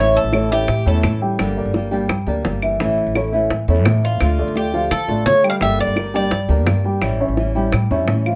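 The recording opens on the metallic, double-strung ring of a Cuban tres, picked up front with some strings doubled at the octave. Beneath it, a full-bodied, fingerpicked nylon-string guitar with old strings, a dark, mellow baby grand playing short-sustained arpeggios, and a thumpy pizzicato upright bass with steel strings all play from the first moment to the end. Round, low-tuned bongos under soft hands join at 0.2 seconds, and close, dry claves with a woody click follow at 0.3 seconds. This is danceable, nostalgic Cuban son and guajira at 170 BPM in a straight 4/4. The harmony moves through A, Gm, A, Dm, Gm and A7, and the tres returns with its melody at 4.0 seconds. The tuning sits at A4 = 437 Hz, and light reverb softens this short cut from a longer piece.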